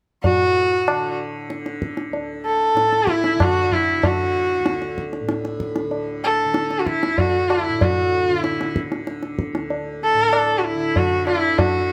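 Closely miked with light reverb, this short fragment of devotional, meditative Hindustani classical music moves at 95 BPM in 3/4, with a rich, bowed sarangi up front carrying the melody between E4 and A4 in smooth, gliding portamento and light vibrato over its sympathetic strings, set against a bright, buzzing tanpura drone and low-tuned tabla with a short ring, the three parts entering together at 0.2 seconds.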